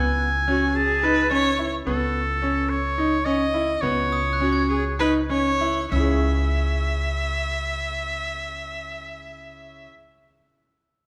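Set in a straight 7/8 at roughly 194-218 eighth-note beats per minute, this urgent, hypnotic piece of contemporary chamber music in C# minor slows down over its opening stretch, heard here as a fragment of a longer work. A warm oboe with light vibrato carries the solo melody up front, in classical style, until it falls silent at 5.3 seconds. Beneath it, a concert grand piano plays arpeggios with clear tone, deep bass and long sustain, while a woody, growly pizzicato upright bass holds C#2. A focused, bowed viola enters at 0.5 seconds with a second line, and a bright, sparkling glockenspiel struck with hard plastic mallets adds dry, bell-like texture in the background, dropping out briefly before returning. The harmony moves from F#madd9/C# to C#m at 5.9 seconds, all within a reverberant recital hall acoustic.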